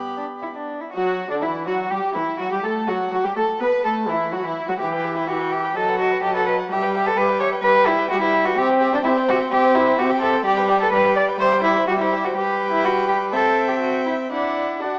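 A spirited, lively classical-period string quartet movement opens at once with all four bowed parts on gut strings in period style: a rich first violin with light vibrato carries the melody from the background, a nasal, airy-bowed second violin adds a second line, and a close, up-front viola and reedy cello supply accompaniment and bass. The quick 126 BPM, 4/4 pulse is handled with rubato as the harmony moves through G, D, E minor and C before settling back toward G and D near 14.3 seconds. The quartet sits in a moderate recital-hall reverb, heard through worn, warbling old cassette tape with pitch drift and a small-speaker sound, in this excerpt cut from a longer piece.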